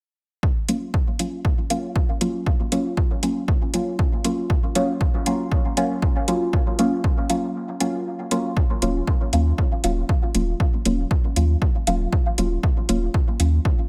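A deep, nasal chord stab with a dark filter pluck, soaked in chorus, phaser, dub echo and sidechain pumping, sits at the heart of this cavernous, hazy, lightly swung dub techno excerpt at 118 BPM, riding a punchy, tape-warm electronic kick and overdriven metallic hi-hats in a lightly reverberant room, with filter sweeps on the stab throughout, a break at 7.5 seconds, a shift from Gbmaj7 to Ebm7 at 8.6 seconds, and a round, pumping sine sub bass joining up front at 8.8 seconds.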